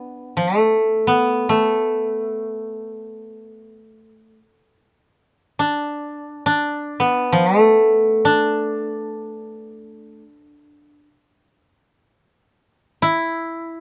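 Austere and meditative, this short cut from a longer piece of Japanese traditional chamber music unfolds in free time as a solo koto, plucked with fingerpicks, sounds a dry, woody tone placed up front within a modest range, captured by close, detailed microphones in a lightly reverberant space.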